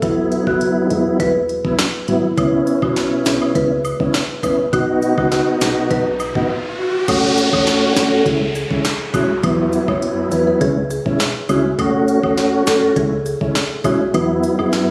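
Bouncy and sultry, this dancehall cut sets a warm marimba melody, played with medium mallets, over a clear, up-front tonewheel organ coloured by chorus vibrato and a slow rotary speaker. Beneath them sit a punchy, round, dark FM bass and an electronic afro-pop kit with a knocking kick, sharp snare, smooth hats, rim clicks and crashes. A close, dry woodblock and cabasa join in the background at 2.4 s, an electronic riser builds into a brief break at 6.5 s, a downlifter also features in the effects layer, and the kick drops out at 14.1 s, all within a light, compressed room sound captured on a phone.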